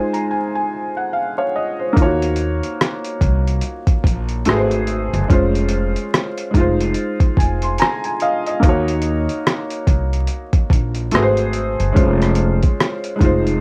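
Home-cassette sound with vinyl crackle and a dry room frames this nostalgic, melancholic lo-fi hip hop cut from a longer piece at 72 BPM in Eb dorian, where a soft, muted felt upright piano carries the accompaniment and adds a brief fill at 7.4 seconds, a muffled, pitched-down sampler-style drum kit with a thumpy kick, hi-hat and rim click sits overdriven and up front, and a woody, dark pizzicato upright bass on gut strings joins at 2.0 seconds as the chords move from Ebm7 through Ab7b9 to Dbmaj7/F.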